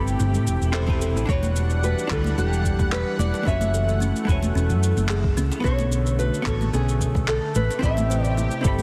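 A smooth, relaxed sunset chillout piece in E dorian at 110 BPM, cut from a longer track, where a round, punchy hollow-body bass sits up front beneath a clean, compressed vintage jazz guitar with tape echo, a lush, detuned unison pad with chorus, and a mellow, woody kalimba tucked in the background. Warm cabasa and handclaps come in at 0.1 seconds, a tape-warm electronic kick follows at 0.9 seconds, and at 1.3 seconds a fingerpicked nylon-string guitar carries the melody with tape echo, with congas and bongos joining in the background just after at 1.4 seconds. The chords move from Am9 through Em9, F#m9 and Bm9 before returning to Am9, in a light small-room ambience with a dense, heavily limited master.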